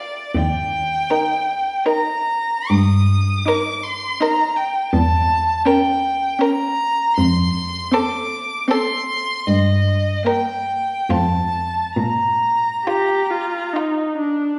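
Heard from further back in a reverberant recital hall with a softened top end, this tender, lyrical slow romantic movement for string quartet, cut from a longer piece, sways in rubato 3/4 at 66-85 BPM as a smooth, distant first violin sings the melody over a focused second violin line, a viola with a smooth top, and a vibrato-rich cello bass that enters at 0.3 s and stops at 12.7 s, the harmony passing from Eb through Edim7 and F to settle on Bb at 12.0 s.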